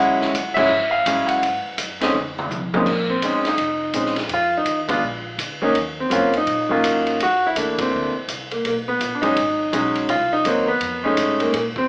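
A fast swung 4/4 at 166 BPM drives this late-night, smoky jazz piano trio fragment in Bb minor, with a distant, roomy big-band drum kit (punchy kick, rolled-off top) joining at 0.2 seconds and a pizzicato upright bass sitting woody and thumpy in the background. Up front, a clear concert grand carries the melody with deep bass, moving through rich altered harmony from Dmaj9#11 to a closing F7alt, while the band hits accents together and the drums play a fill from 2.1 to 2.9 seconds. The whole trio plays live in one large studio room with moderate reverb, filtered through an AM radio sound.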